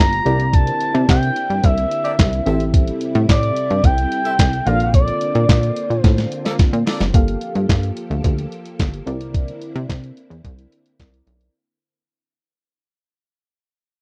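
Early-eighties boogie funk at 109 BPM in a straight 4/4, danceable with a late-night glow, this short cut from a longer piece rides a progression of C9, Am7 and Bbmaj7 before moving to Gm9 and back to C9. An expressive portamento lead sits up front with the melody, its smooth, dark sawtooth tone laced with ring modulation, vibrato, chorus and slapback echo, and it stops at 6.6 seconds. Beneath it a mellow FM electric piano adds round, full-bodied chords with a noise layer and chorus, while a soft string machine holds silky, vintage pads in the background through an ensemble chorus. A mellow horn section enters at 0.3 seconds with a second line in octave doubling and light vibrato, playing until 7.0 seconds. The punchy, nasal analog bass plucks out a funky low end up front, and a compressed, muffled sampler-style drum kit with thumpy kick, medium-tuned snare, hi-hat and handclaps drives the groove, capping the opening section with a fill before the piece fades out from 7.1 seconds. 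The recording is dry and close, in the manner of a 1970s studio with little reverb.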